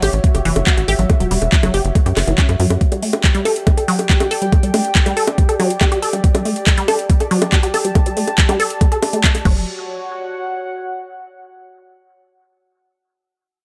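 An overdriven, knocking electronic kick sits up front in this hypnotic, intense psychedelic trance excerpt at 140 BPM in F# phrygian, alongside a garage kit of bongos, crash, handclaps and metallic hi-hats that shares the same grit. A lush, detuned unison pluck carries the riff with sidechain pumping, dub echo and a filter sweep, while a tight, dark sawtooth sequencer bass drives underneath until 2.8 seconds and returns briefly at 9.5 seconds. A warbling, lo-fi pad with chorus and its own reverb hangs behind, pumping too, over harmony moving from F#5 to G5 and back, and it lingers alone after the other parts stop.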